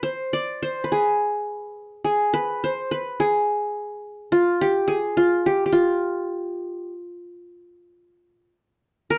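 A solo qanun, mellow yet bright-edged with the shimmer of its triple strings plucked by fingerpicks, sits up front in a small, dark-toned room and traces a longing, hypnotic Arabic line in F maqam nikriz between F4 and D5 at a straight 106 BPM in 4/4, in a 9.2-second excerpt cut from a longer piece.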